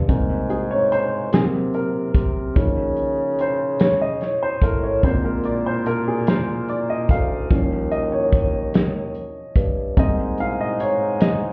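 In a slow, straight 6/8 sway, this soulful, hopeful gospel fragment sets a woody upright piano, with its action noise audible, as the soloist over chords moving from Abmaj7 through Db6, Bb7 and Eb7 back to Abmaj7. A mellow bassoon with light vibrato carries the bass line in a classical style, while a natural country drum kit with a punchy kick, medium-tuned snare and hi-hat enters at 0.1 seconds. All three parts sit up front, yet the whole is heard muffled as if through a wall, bathed in club reverb and studio ambience.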